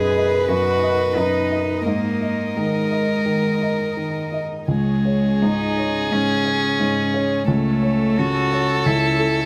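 Melancholic and fragile, this short neoclassical passage, cut from a longer piece, unfolds with a loose rubato feel in 4/4. A soft, felt-muted upright piano sits up front with a mellow, vintage tone beneath an intimate solo violin melody played sul tasto with light vibrato and an airy bow, while a single cello carries a pure, floating second line set further back. A chamber string section holds sustained chords quietly in the background, and the close, detailed recording carries little reverb.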